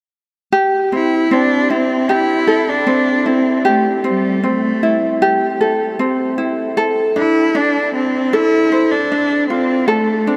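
A straight 4/4 pulse at 77 BPM underpins this reflective, wistful pop fragment in A minor, cut from a longer piece and tuned slightly low to A4 = 436 Hz. A bright, light acoustic ukulele enters at 0.5 seconds, fingerpicked and up front as accompaniment. At 0.9 seconds a single bowed cello takes the melody, its tone rich and smooth with light vibrato, played evenly and placed up front, trailing a diffuse ambient delay. The harmony rests on Am7 before moving to Dm7 at 6.8 seconds. A huge ambient reverb with a long 6.7-second tail soaks the mix, giving the whole passage a dreamy quality.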